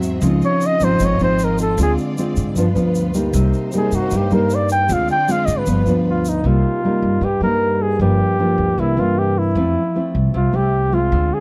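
This bossa nova excerpt has a smooth, intimate mood in a straight 4/4 feel, captured as a dry, close 1970s-style studio recording with small room ambience. A thumb-plucked nylon-string guitar sits up front with a deep classical tone and audible finger squeaks, while a woody pizzicato upright bass with steel strings holds the low end. Bowed symphonic strings add lush, expressive sustained chords with vibrato and a soft attack, and a grainy, bright egg shaker sits close by. Both the strings and the shaker drop away at 6.4 seconds as the second section begins. From 0.5 seconds, a mellow flugelhorn carries the melody as an up-front jazz-style solo, its vibrato and smooth top set over the guitar and bass. The harmony moves from Dbmaj9 through Dm7b5, G7 and Cm7, then on to Gm7, C9 and Fmaj7.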